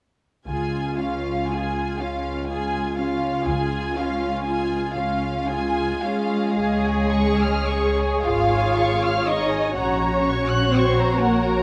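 A slow, romantic movement for string orchestra opens at 0.5 seconds with all five muted sections sounding together, lyrical and serene in six-eight with uneven beats and free rubato. The symphonic violins carry the melody in a lush, close tone, while a smaller chamber violin section traces a second line with a smooth top that reaches higher than the lead. Violas fill the middle with dark, veiled accompaniment, and the cellos, set up front with light vibrato, join the double basses, whose sound is warm and soft in attack, to anchor the bass. The harmony rests on a single chord through the opening section, shifting only at 9.7 seconds as the second section unfolds. A moderate scoring-stage reverb gives the con sordino strings a gentle halo, and this fragment is cut from a longer piece, ending at 11.6 seconds.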